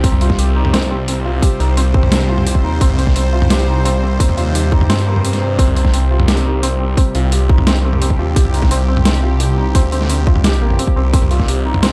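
Half-time drum and bass with a dark, spacious mood, built on a swirling, detuned saw bass run through a phaser and a hard-clipped electronic kick, both sitting up front, while a gritty, pitched-down sampler-style kit adds overdriven hi-hat, a high-tuned snare and toms. A felt-muted upright piano plays soft, intimate arpeggios with audible action noise, 12-bit sampler grit and tape echo, over a tense, string-like bowed drone of sustained chords that stays in the background with vibrato, its own reverb and sidechain pumping. The mix is dry and dark, with a brief break from 5.2 to 5.6 seconds in this cut from a longer piece.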